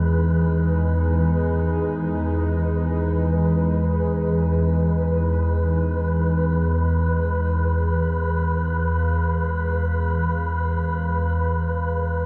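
A deep, rumbling drone sits up front from the start, its ominous sawtooth edge stirred by a phaser, while a moody, detuned pad of sustained chords and a breathy, wind-like tuned noise texture rise slowly around it. This unsettling dark ambient fragment, cut from a longer piece, bathes everything in a vast cathedral reverb, with chorus thickening the pad and shimmer reverb haloing both the pad and the airy noise layer. Across its 12.3 seconds the pad gradually fades out.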